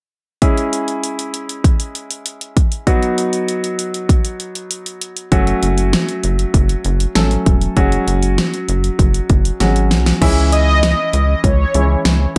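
A straight 4/4 groove from a punchy, layered pop drum kit with gated reverb drives this cool, driving synth-pop excerpt, with a clear, polished baby grand piano providing accompaniment from the start. A rubbery, hollow square bass joins at 5.3 seconds, and a drum fill leads into a new section at 10.2 seconds. At 10.5 seconds a mellow, brassy synth lead with chorus, vibrato and digital delay carries the melody, all set in light reverb.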